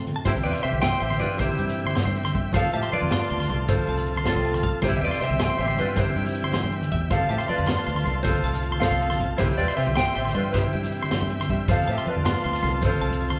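A live, one-room studio sound with moderate large-room reverb frames this carefree, joyful highlife piece in 12/8, cut from a longer work and moving between C and F chords. A dark, fingered clean electric guitar carries the melody through spring reverb, a second clean electric guitar, picked and scooped, plays arpeggios above it, a soft-attack trumpet adds a distant second line, and a woody fingerpicked steel-string acoustic guitar with old strings sits in the background. A round, foam-muted fingered electric bass grounds a gritty, saturated breakbeat kit with a high-tuned snare that opens with a drum fill at 0.0 seconds, joined by thick-skinned congas, a grainy shekere and a buzzy, overdriven combo organ with heavy vibrato holding sustained chords.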